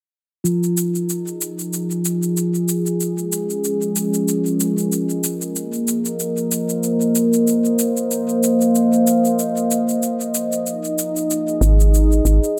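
Organic downtempo at 94 BPM in 4/4, with a lightly swung sixteenth feel and tuning set to A4 = 438 Hz, this hypnotic, mystical piece is cut from a longer work. A smooth, warbling analog pad carries sustained chords through the whole passage, its detuned vintage tone thickened by chorus and shaped by a filter sweep, moving from Ab5 to Db69/F and Bbsus2 before returning to Ab5. Beneath it, a bronze singing bowl struck with a felt mallet adds a dark, meditative ring with slow beating. An electronic, overdriven shaker keeps the pulse. Only at 11.6 s does a woody FM bass arrive, round and up front with a fast attack and tube saturation, sounding a single low Ab1 that decays by 12.4 s. The echo-heavy mix sits in a wet spring reverb, lending the sound a mystical depth.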